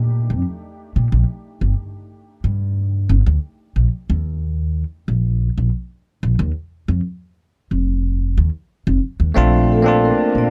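A woody, thumpy pizzicato upright bass carries this smooth sunset chillout cut on its own from 0.0 seconds, dark and up front at 91 BPM in straight 4/4 in Bb major, moving between Bb5 and Eb5 chords with open unaccompanied stretches between them. At 9.3 seconds a bright, clean bell-like tine electric piano arrives on a Bbmaj9 chord. At 9.7 seconds a metallic, ringing vibraphone, played with medium mallets and the motor off, adds a brief melody through analog delay and a boxy small-room character, all within light reverb that keeps this warm fragment intimate.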